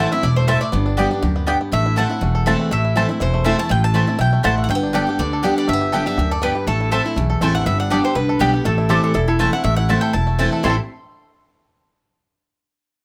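Rustic and lonesome, this short bluegrass passage, cut from a longer piece, rides a brisk 242 BPM in 4/4 with a light swing on the eighths, settled in A dorian and rocking between A minor and G. A bright, double-strung mandolin carries the high melody with a touch of plate reverb, while a twangy, percussive banjo, played with fingerpicks, shares the lead lower down and sits further back in the mix. A second, woody mandolin adds stabs, and a full-bodied dreadnought steel-string guitar provides picked accompaniment, its finger squeaks audible. The upright bass is thumpy and dark with gut strings, sitting up front. At 8.9 seconds a lap resonator guitar joins with a metallic, nasal slide line, and a moderate studio reverb gives the whole band a close, natural room.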